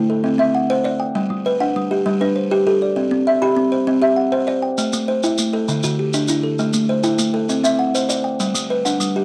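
A rolling 12/8 pulse at 132 BPM drives this hypnotic, trance-like southern African traditional piece, where two kalimbas weave an mbira-style interlocking cycle of short, plucked arpeggios over C, G, Am and D. Both sit up front with a cassette-tape colour: one buzzes with a thumbnail pluck on a hollow box, while the other sounds warm and woody from a thumb-plucked solid board. Grainy maracas join at 4.8 s, and a moderate spring reverb gives this home-recorded fragment of a longer performance its intimate, homespun sound.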